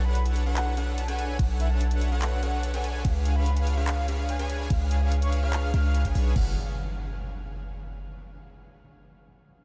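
This future bass excerpt opens mid-drop at 145 BPM in a half-time 4/4 feel, with a deep, boomy 808-style bass sitting up front beneath a fat, detuned sawtooth polysynth riff over Bm9 moving to C#7b9. Above it, a breathy, flute-like synth lead carries the melody in the background, its soft attack and vibrato colored by analog chorus, tape echo and sidechain pumping. An airy, dreamy detuned lead spins gentle arpeggios with portamento alongside it, also washed in chorus and delay. A trap kit with bright hats, handclaps and crash cymbal comes in at 0.2 seconds, and a knocking electronic kick joins at 1.4 seconds, both carrying a tape-tinged character. At 6.4 seconds the drums stop and an electronic impact lands up front, closing this emotional, bittersweet passage in light reverb.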